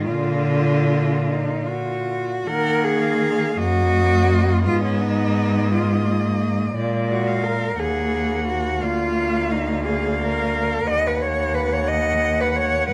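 Melancholic and yearning, this classical passage for a cello quartet, cut from a longer piece, sways in a rubato 6/8 as a focused, vibrato-laden melody cello sings above an up-front second line and an expressive accompanying cello, both with soft attacks and gliding portamento, while a smooth, even bass cello anchors the rich ensemble in a moderate recital hall reverb captured by close, detailed microphones.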